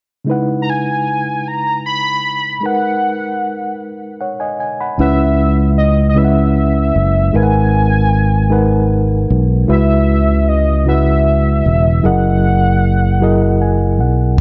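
In a slow, straight 6/8 at 51 BPM, this late-night, yearning R&B excerpt in C# dorian opens on a reedy electric piano with fast tremolo and a velvety, chorused synth lead carrying the melody, with a round, dark fingered bass entering at 5.0 seconds beneath chords like C#m11, G#m7 and F#13, the piano adding fills at the close of each section, all set in a small room with light reverb and the warbling pitch drift of worn cassette tape.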